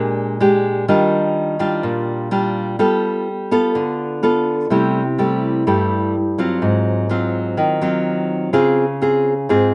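A fingerpicked nylon-string guitar plays solo from the first moment, up front and classical in tone, with fresh strings, audible finger squeak and a slapback echo. This breezy, sunny bossa nova fragment moves through rich chords such as Ebmaj9 and G9, then shifts to a second section at 4.7 seconds that passes through C6, Ab6 and Dbmaj7. Recorded outdoors with light reverb, the sound is soft at the top, its highs gently rolled off.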